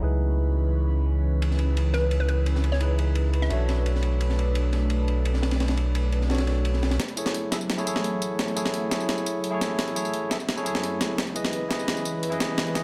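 Liquid drum and bass at 172 BPM in F# minor, this melancholic, rolling clip pairs a barky, bright tine electric piano with a filter sweep and tape echo, an airy, breathy pad with chorus and phaser, and a deep, full sub bass with octave up front. A dark, saturated acoustic breakbeat kit enters at 1.4 seconds, and a hollow, bouncy square pluck follows at 1.9 seconds to briefly carry the melody. Then a gritty, compressed sampler-style kit with hi-hat, snare and tambourine takes over at 7.0 seconds for a drum fill and build-up over chords moving from C#m7 through Bm7 and F#m7, all in light reverb.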